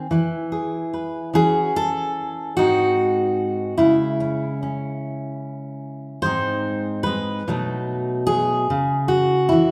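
A long recital-hall reverb, about 1.8 seconds of decay, surrounds this brief folk recording, giving it the resonant air of a church or concert hall. At its center is a single fingerpicked steel-string acoustic guitar, a full-bodied jumbo sound placed up front, with an audible finger squeak. The mood is haunting and wistful, moving slowly at 49 beats per minute in a straight 6/8 feel in C# minor. The opening passage moves from E through C#m/E to G#7 before the guitar continues outside any clear chord from around 3.8 seconds. A second passage begins at 6.2 seconds on G#, passing through B7 and settling on C#m as this short cut from a longer piece closes at 9.7 seconds.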